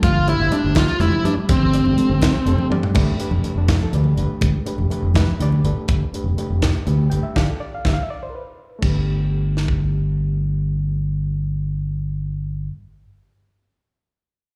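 Slick and funky, this short cut from a longer electric jazz fusion piece moves at 82 BPM in a straight 6/8, centred on G mixolydian with harmony that shifts from Gsus4 to G7 and settles on G. A dark, smooth lead guitar with overdrive and slapback echo plays the melody up front before dropping out at 2.7 seconds, where the drums play a fill. A reedy, gritty electric piano, overdriven through a combo amp with fast tremolo and slapback echo, carries the accompaniment throughout, while a punchy, fingered electric bass sits up front beneath it. The crisp kit, with its high-tuned snare, tight kick, rolled-off top and crash, hi-hat and toms, drives the groove until 9.8 seconds. Bright, close congas with slapback echo sit in the background until 5.6 seconds, a band accent lands later on, and the whole performance comes across as a live club gig heard through the venue's PA, wrapped in small-room reverb.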